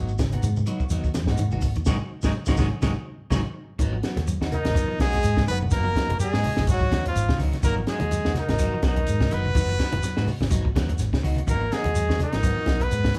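An intense, funky afrobeat excerpt in G# dorian at 125 BPM opens on G#m7 with phased, slightly broken-up electric guitar stabs over a round, punchy hollow-body bass. Grainy shekere, very quiet low-tuned congas, a dark clean guitar picking arpeggios in the background and a compact cocktail kit with a high-tuned snare join almost at once, and the band hits an accent from 1.9 to 3.8 seconds. At 4.5 seconds a brilliant, close-miked trumpet takes the melody while a distant alto saxophone with vibrato carries a second line beneath it, the whole band playing live in one room with swung sixteenths and a moderate studio reverb.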